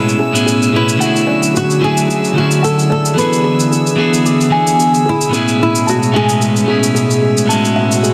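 Fingerpicked flamenco guitar melody and a dark, clean electric guitar up front open this sunny, smooth sunset chillout cut at 111 BPM in A major, with a gentle 16th-note swing, together with an airy, breathy pad with chorus, a woody, buzzing kalimba arpeggio through a low-pass filter and delay, and a glassy drifting-harmonics texture in the background, while an electronic shaker enters at 0.1 s, all moving through Amaj9, Dmaj9#11 and E7 inside a lush hall reverb and a dense, heavily limited modern master.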